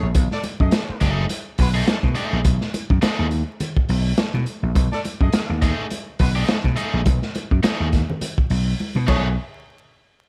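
A light reverb and a layer of vinyl crackle give this short funk clip its textured surface. At 104 BPM in 4/4 with a lightly swung sixteenth feel, it struts in B mixolydian over a B6 chord that moves to B13 near the end, carrying an energetic mood. The gritty, saturated breakbeat kit sits up front with a tight kick, a medium-tuned snare, hi-hat and dark crash cymbals under a rolled-off top, alongside a round, punchy electric slap bass played through an amp. Congas add bright, thin-skinned color from a small room, very quietly, while a cranked, picked electric guitar with overdrive and spring and plate reverb joins the accompaniment at 1.0 seconds. A warm horn section with vibrato carries a second line from a distance, roomy under its plate reverb, and a drum fill at 8.8 seconds brings the clip to its close.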